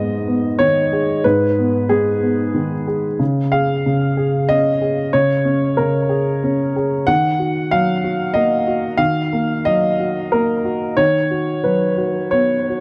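A dry, close recording with a 1970s studio character and a booth's moderate ambience frames this intimate, melancholic neoclassical minimalist piano passage in Eb minor, tuned to A4 = 438 Hz, where a woody, up-front upright piano plays alone at a rubato 92 BPM in 3/4, colored by tape echo as the harmony moves from Abm through Db and Ebm to B/D# across 12.8 seconds cut from a longer piece.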